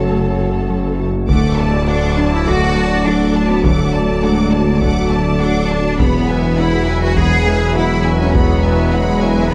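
In a straight 4/4 pulse, this tense, relentless cut from a longer hybrid orchestral and electronic film score moves from F#m to D at 1.3 seconds and on to Eadd9 at 6.0 seconds. From the opening, a bowed low end of clear, intense cellos and woody double basses sits beneath a menacing, detuned saw bass that swells through a saturated filter. Above them, lush background violins carry a second line while dark violas hold the accompaniment, a hollow, flute-like pad and mellow French horns sustain very quiet chords, and a round, tine-like synth pluck traces gentle arpeggios. At 1.3 seconds the full weight arrives: an expressive, vibrato-rich violin melody takes the top, bright trombones add tight, very quiet chords, a soft-attacked tuba deepens the bass, and a taiko ensemble struck with hard sticks drives from the background. A moderate scoring stage reverb gives the sections a shared space around them.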